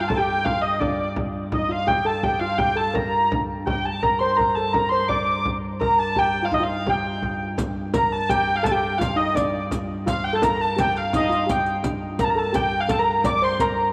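A dark, woody hurdy-gurdy opens this ancient-sounding, driving medieval dance, carrying the melody up front over a soft pipe-organ drone on a low G, voiced with flute stops that have a gentle chiff and a baroque character. Alongside it, a mellow steel pan, played with soft rubber sticks, adds a shimmering second line in a lower register. A deep, large frame drum, miked close, keeps the brisk 169 BPM pulse in 3/4 with a straight feel, in G minor. At 7.6 s, as the opening section repeats, a riq joins in the background with dark, dry jingles. A wet plate reverb with a long tail surrounds the sound, and the recording is a short cut from a longer piece.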